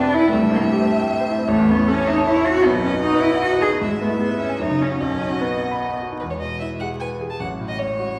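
A rich, up-front cello carries the second line with vibrato, soft attacks, portamento and an expressive touch, and it is the most prominent voice in this lively, spirited classical-period movement for piano trio in triple time. Above it, a single bowed violin sings the melody with a smooth, even tone and vibrato, sitting further back in the balance. A clear, intimate baby grand piano, also up front, supplies the accompaniment with a natural sound and audible action noise. All three players are heard throughout the short passage, which is cut from a longer piece and shifts into a new section at 6.2 s. The trio is heard from further back in a reverberant recital hall, and vinyl crackle adds a surface texture.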